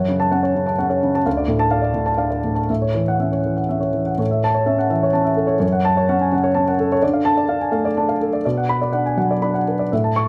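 A rubato passage in 3/4, drifting between 118 and 132 BPM, carries this intimate, peaceful stretch of neoclassical minimalist piano in A major, tuned to A4 = 441 Hz and cut from a longer piece. A solo grand piano plays up front from 0.0 to 10.3 s, its dark, worn tone spanning D2 to C#6, with audible action noise and a slapback echo set in a moderate studio reverb. The harmony moves through F#m, Dm and A6, then states the same idea again from 4.2 s before settling on Bm at 8.4 s.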